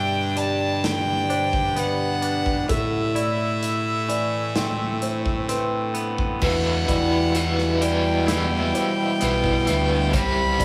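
Cathartic and melancholic, this post-rock piece at 64 BPM in E minor sets an up-front, airy-bowed violin melody with light vibrato and analog delay over an icy, crystalline pad, delayed arpeggios from a mellow felt-muted upright piano with audible action noise and a clean, twangy electric guitar, a fuzzy overdriven fingered bass, and a punchy big-room rock kit entering at 0.4 s, before a raw, overdriven garage guitar riff with tremolo arrives at 6.4 s to drive a build-up within a small room's light reverb.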